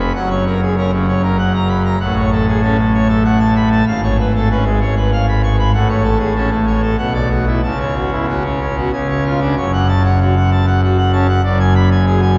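A full pipe organ dominates this majestic, dramatic classical toccata fragment, playing alone with a brilliant, mixture-laden registration in a romantic voicing that spans from E#1 up to C#6. Set in F# minor at 96 BPM in a straight 3/4, the harmony moves from F# through F#m/A and C#7/G# before passing through Bm and F#m/C# toward a C# chord. At 9.6 seconds a new section begins on F#m, closing on a tense G#m7b5/F# at 11.4 seconds before the 12.4-second fragment cuts off mid-piece. The organ sits up front, yet the listener seems placed further back in a cathedral, where a long, wet reverb of 6.8 seconds blooms around every chord. The sound carries nothing above 7.7 kHz, so the highest registers arrive softened and veiled.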